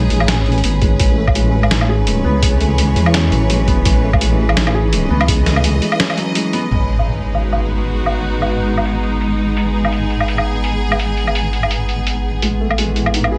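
Lush, bowed symphonic strings with sidechain pumping, a soft felt-muted upright piano arpeggiating through dub echo, a deep, saturated wobble bass and an eerie, metallic FM drone in the background open this tense, cinematic half-time drum and bass passage at 168 BPM in G# phrygian. A gritty, pitched-down boom bap kit with a medium-tuned snare joins almost immediately, and a thumpy electronic kick follows from 0.8 seconds. A background electronic impact at 6.7 seconds then coincides with a filter sweep on the drums, and the piano falls away until 12.4 seconds.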